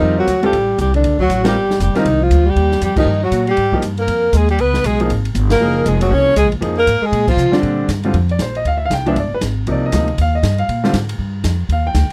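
This dry, close studio recording has a 1970s character, with little reverb and the players captured near the microphones. It is a playful small-group swing and bop piece in 4/4, cut from a longer performance. A breathy, whispered alto saxophone carries the melody up front with vibrato and a soft attack, while a warm tenor saxophone with scooped notes plays a second line beneath it, and both horns stop at 7.6 seconds as a new section begins. A clear grand piano with audible action noise accompanies throughout, and a woody, dark pizzicato upright bass sits prominently underneath. An airy open drum kit with dark cymbals and a boomy kick enters at 0.3 seconds and stays low in the mix, while the band hits several accents together during the opening section, leaving piano, bass and drums to carry on to the end.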